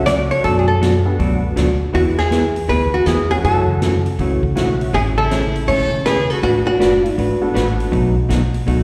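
Swinging and playful, this brief western swing cut from a longer country piece features a dark, clean archtop guitar carrying the melody up front over a jangly, detuned honky-tonk upright piano, a fingered hollow-body jazz guitar, woody pizzicato upright bass and a swinging big-band drum kit with a punchy kick, while a clear, intense bowed fiddle adds a second line from 4.9 to 7.2 seconds, all heard through a club PA with plate reverb and slapback echo on most parts.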